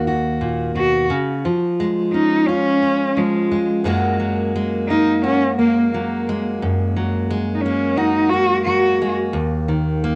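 In a straight 4/4 feel, this stirring, bittersweet folk passage cut from a longer piece opens with a bright, full-bodied jumbo steel-string acoustic guitar fingerpicked up front on fresh strings with audible finger squeak, joined at 0.8 seconds by a single warm, expressive bowed cello carrying the melody with vibrato, portamento and a smooth top through analog delay, both parts colored by cassette tape as the chords move from Ebm through Db and Gbadd9 to Eb5 in a moderate small room of a home cassette recording.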